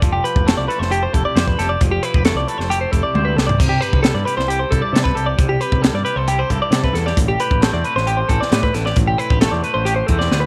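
A crisp, airy fusion drum kit with a high-tuned snare and punchy kick starts this playful, wistful math rock and midwest emo excerpt at 134 BPM in C major together with a growling, overdriven picked bass and a bright, twangy electric guitar playing accompaniment. Up front, a clean, compressed twelve-string electric guitar spins arpeggios over chords moving from Fmaj9 to C6 to Am11. Drum fills land around 3.1 seconds and again at 10.3 seconds, all set in a polished studio reverb.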